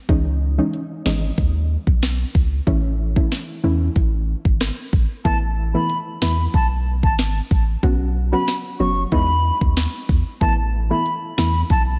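This summery, bouncy dancehall cut opens at 0.1 seconds with an electronic afro-pop drum kit up front, its deep kick, sharp snare, rim click and warm hi-hats setting a straight, steady groove. A punchy sub bass arrives at the same moment, its sine-like tone sustained and deep, with a fast, pitch-drop attack that keeps it prominent in the mix. Beneath them, a soft, round pluck with a dark, filtered edge and short decay carries the accompaniment, thickened by chorus and breathing with sidechain pumping as the harmony moves from C#madd9 to A. At 5.2 seconds a mellow concert flute takes the melody, airy and crisp in attack with vibrato and a trailing delay, while the chords shift through Asus2, Bsus2 and Emaj7. A light reverb gives the whole track a touch of space, and this short section ends as if lifted from a longer piece.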